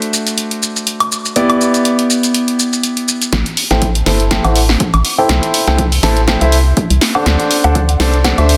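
A dense, heavily limited modern master with light reverb and digital ambience carries this soulful, energetic piano house at 122 BPM in A dorian, swung on the sixteenths. A clear, vintage concert grand plays the riff up front through sidechain pumping, a low-pass filter and digital delay, over a punchy, tape-warm analog drum machine of hi-hat, shaker, snare and woodblock. At 3.3 seconds a build-up and drum fill begin as a filter sweeps the piano, and a hollow, dark, organ-like FM bass arrives with its own pumping alongside an analog electronic kick re-recorded in a small room.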